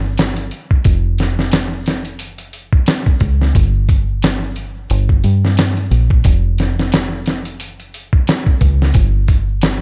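This trip hop excerpt is a brooding, cinematic groove at 89 BPM in 4/4, with a 57% swing on the sixteenths and tuning set to A4 = 439 Hz. A deep dub fingered electric bass sits up front from 0.0 s, its dark, round, foam-muted tone captured both direct and through an amp while it moves between F1 and G2. A dusty soul sampler-style drum kit joins at 0.2 s with hi-hat, a thumpy kick and a fat snare, sounding compressed and gritty, as if re-recorded in a large room, and placed close to the listener. An acoustic egg shaker with a group-handclap character stays in the background, caught in a live room. The production is dark and warm with little reverb, holding a single section through to 9.8 s.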